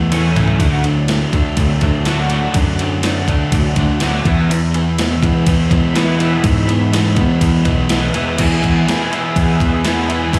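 Indie rock at 123 BPM in a straight 4/4, upbeat yet wistful, caught as a live club gig heard through the venue's PA with little reverb on the room. A gated 80s digital drum machine opens with a fill from 0.1 to 0.6 seconds, its thumpy kick and gated-reverb snare sitting up front with a tape-warm, sampler-style character across crash, ride and toms. Two overdriven guitars carry the riff: one crunchy and bright, up front with spring reverb, and another dark, compressed and scooped, dressed in ensemble chorus, digital delay and slapback echo. A punchy picked electric bass holds the low end, while a very quiet, mellow ensemble organ-string pad with a vintage, organ-like tone enters at 0.6 seconds on sustained chords. The harmony moves from Aadd9 to Dadd9 and then to E at 4.3 seconds, and the cut ends partway into a new section that begins at 8.4 seconds.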